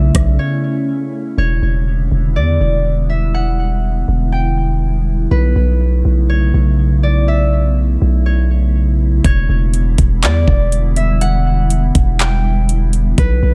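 A deep, sine-toned 808-style bass sits up front throughout this spacious, melancholic cloud-rap excerpt, its long notes striking fast and then decaying under a glassy FM pad that sustains chords with ensemble chorus, its own reverb and sidechain pumping. A fingerpicked concert harp carries the ringing melody through tape echo, drifting over chords that move between B9sus4 and Em7 in a half-time feel. The electronic R&B drum kit flashes briefly at 0.1 seconds, then returns at 9.2 seconds with a knocking kick, metallic hi-hats, handclaps and rim clicks up front in the echo-heavy mix.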